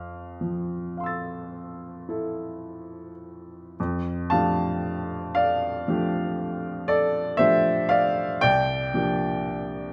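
Unhurried rubato in 9/8 at roughly 34-40 BPM carries this luminous, serene excerpt of impressionist solo piano in F major, where a clear, open, up-front baby grand spans C2 to A6 over a moderate large-studio reverb, moving from Fmaj7 to F69 at 3.8 seconds and settling on C9sus4 at 8.4 seconds as the phrase repeats.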